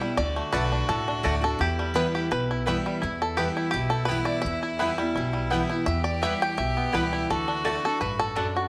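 A straight, driving 4/4 pulse gives this short bluegrass cut from a longer piece a rustic drive. A picked steel-string acoustic guitar sets the rhythm with a full-bodied, fresh-stringed jumbo sound, up front and complete with finger squeak, while an upright bass joins at 0.2 seconds with thumpy, dark pizzicato on gut strings. The five-string banjo carries the melody as a solo throughout, its fingerpicked tone bright, twangy and percussive, placed up front and colored with tape echo. A single bowed fiddle plays a clear, earthy second line with light vibrato, and a mandolin enters at 0.5 seconds with warm, woody double-string stabs in the background. The harmony moves from D to E minor at 1.6 seconds and returns to D near the end, with the whole ensemble set in a small room ambience and a moderate echo chamber reverb.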